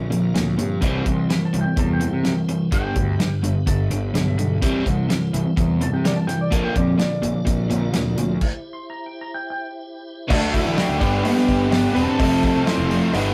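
A rough rehearsal-room sound with moderate studio reverb frames this sunny, confident classic rock excerpt at 127 BPM in a straight 4/4, settling into G major at 10.3 seconds. A dark, clean lap steel carries a slide solo over a piping tonewheel organ with slow rotary speaker and key click in the background, an up-front crunchy overdriven guitar riff, a very quiet cranked stack guitar, fuzzed electric bass and a dry, damped 70s drum kit with a fat snare and dark cymbals, with a stop from 8.4 seconds. From 10.3 seconds a bright double-tracked distorted guitar riff, an octave-fuzz lead playing a second line and a faint metallic cowbell join in.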